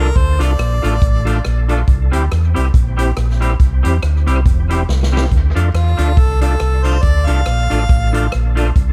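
A warm, close-miked harmonica with vibrato and scooped notes carries the melody through dub echo in this mischievous, driving ska excerpt at 139 BPM in D minor, dropping out at 1.7 seconds and returning at 5.7, over a dark, round, up-front fingered bass, twangy picked clean guitar, fat, lightly overdriven tonewheel organ stabs spun through a fast rotary speaker, and a swinging big-band drum kit with a boomy kick that plays a fill at 4.9 seconds, all moving between Dm and C in a small room.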